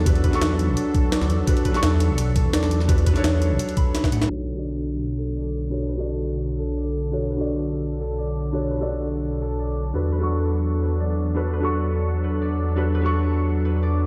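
Liquid drum and bass, lush and rolling, in which a soft felt-muted upright piano with delay, a warbling chorused analog pad with sidechain pumping, ringing concert harp arpeggios through a low-pass filter and delay, and a menacing, saturated detuned saw bass sustain throughout, while a knocking, tape-warm electronic kick and a gritty, pitched-up jungle sampler-style kit of hi-hat and snare drop out after a drum fill by 4.3 s, leaving a filter sweep on the harp to run until 14.1 s amid the stone-room reverb of a big sound system in a bare room.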